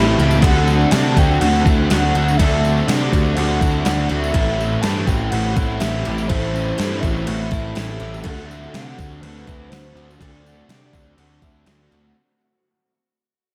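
Dreamy and hazy, this shoegaze and dream pop excerpt fades out under a lush hall reverb as a fuzzy, overdriven bass sits up front beneath layered riffs from biting double-tracked, fuzz-soaked and very quiet overdriven guitars, a shimmering octave-doubled twelve-string acoustic picking arpeggios through chorus and ambient delay, a mellow horn-like synth lead with vibrato and a filter sweep carrying the melody over D7 and Am7, a jingly tambourine, and a thumpy, tape-tinged 12-bit drum machine with crash, kick and snare.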